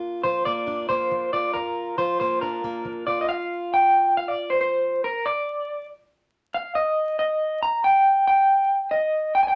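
An electric guitar through a small old amp, dark and slightly broken-up with tremolo, carries an uplifting, anthemic folk melody up front at 138 BPM, over a bright fingerpicked plugged-in steel-string acoustic guitar that plays only until 5.0 seconds, all set in a small room with vinyl crackle in this short cut from a longer piece.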